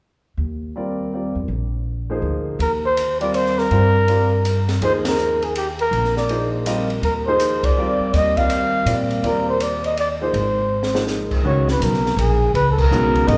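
Modal jazz in a swung 3/4 at 163 BPM in Eb major, spiritual and searching, where a woody pizzicato upright bass opens at 0.4 s and a natural-sounding grand piano joins it on the Ebmaj9 chord; at 2.6 s a whispered, breathy, close-miked trumpet takes the intimate lead with vibrato and a soft attack, alongside an acoustic drum kit with dark cymbals, a high-tuned snare and a boomy kick, as the band hits scattered accents, the drums fill at 10.7 s, and the harmony moves through Ab69 to Db13sus4, all bathed in a lush recital-hall reverb in this excerpt from a longer piece.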